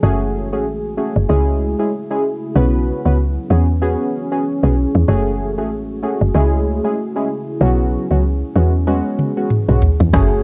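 An afrobeats piece at 95 BPM in F# minor moves with a hypnotic, sultry sway, its sixteenths swung at 58%. A woody log drum bass sits up front with a punchy, percussive FM tone and a noise layer, its notes striking fast and decaying. Round, detuned sawtooth keys carry the accompaniment with a filter sweep, chorus and the soft grain of cassette tape. Beneath them, a deep ambient pad holds slow-blooming, moody chords, its vintage unison sawtooth and sine sub octave warbling through chorus and reverb into a dark haze. The harmony cycles through F#madd9, C#m, Bsus2 and E6. At 8.9 s an electronic afro-pop drum kit enters with a fill of deep kick, rim click and toms before this cut from a longer piece ends at 10.4 s, the whole carrying the intimate feel of a home cassette recording.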